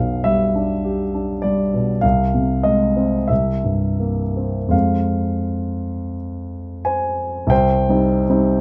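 A warm grand piano sits up front in this mournful, wistful romantic nocturne for solo piano, played with free, rubato phrasing in four. The harmony drifts from G over B through F minor and C7, settling on F minor at 4.7 seconds before shifting to C minor at 7.5 seconds as a new section begins. A dark production and light reverb shade this brief fragment, which is cut from a longer piece.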